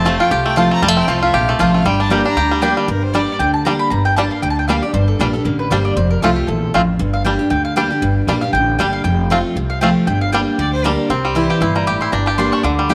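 Twangy, fingerpicked banjo carries the melody up front in this rustic, haunting swung bluegrass cut, joined by a bright, full-bodied dreadnought guitar accompaniment, thumpy pizzicato upright bass and woody, double-strung mandolin stabs that take a solo from 2.9 s, while a distant, nasal bowed fiddle adds a second line until 3.3 s and briefly again at 10.6 s, set in a small, lightly reverberant room.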